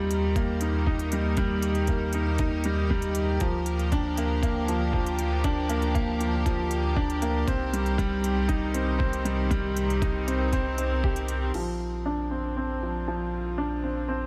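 A woody, slightly detuned upright piano riff opens this hypnotic, intimate piano-and-strings electronica at 118 BPM, sitting up front through a low-pass filter and tape echo over soft-attack bowed string chords and a round, dark analog bass, both pumping with sidechain compression across a progression from Eb through Gm7/D and Cm7. A muffled, thumpy, overdriven kick and a crisp-hatted electronic kit with crash cymbal drive the groove in a small, lightly reverberant room until about 11.1 to 11.6 seconds. From 11.5 seconds a filter sweep on the piano carries the passage into a closing Bbadd9 section, cut from a longer piece.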